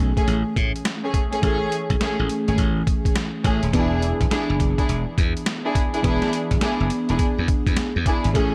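A glassy, growly slap bass and a lush, dreamy FM electric piano with a soft pad layer, treated with chorus and phaser, open this bouncy, flirty new jack swing excerpt at 104 BPM with a swung 16th feel, joined at 0.2 seconds by a gritty, pitched-down boom bap drum kit with a thumpy kick and high-tuned snare, plus bowed studio strings with vibrato and delay stabbing over a move from Amaj7 to E7 at 3.7 seconds, all in a dark production with light reverb.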